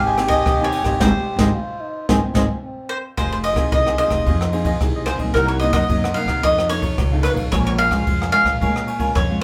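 An up-front, picked bowl-back mandolin carries the melody in this lively, nostalgic samba and choro excerpt, over crisp cavaquinho, full-bodied fingerpicked nylon-string guitar and woody pizzicato upright bass. A raspy, growling trombone adds a vintage second line until 3.1 s, while the band hits accents and a jazz brush kit with a boomy kick plays a fill from 2.6 s. The music then moves into a new section at 3.2 s, all within the live sound of a band sharing one small, reverberant room.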